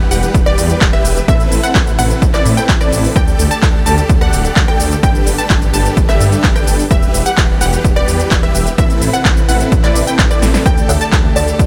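Emotional and anthemic, this festival progressive house excerpt drives at 128 BPM in a straight 4/4, with a thick, detuned saw bass, a huge supersaw riff and bright unison pluck arpeggios all pumping against the sidechain while a smooth-topped string section holds sustained chords in the background over a progression moving from Em through Amadd9, Dsus4 and Gadd9. An overdriven big-room kit of crisp hats, snare, handclaps, cabasa and rim click comes in at 0.1 seconds, and an up-front, punchy electronic kick follows at 0.3 seconds, with tape echo trailing the riff and pluck. After a drum fill at 10.4 seconds, a woody, buzzing kalimba slips in at 10.9 seconds with a brief echoed melody, all in a dry, punchy mix.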